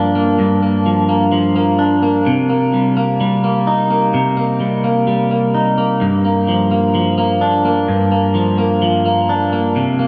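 A dreamy mix soaked in a cathedral-like reverb frames this brief dream pop excerpt, where a lone clean electric guitar sits up front with a twangy, compressed tone, lush chorus and a diffuse ambient delay. At a slow 64 BPM in a straight 4/4, and tuned slightly low to A4 = 438 Hz, the guitar plays for the full 10.1 seconds, moving from Gm7 to Cm7 at 2.3 seconds. The mood is blissful and ethereal.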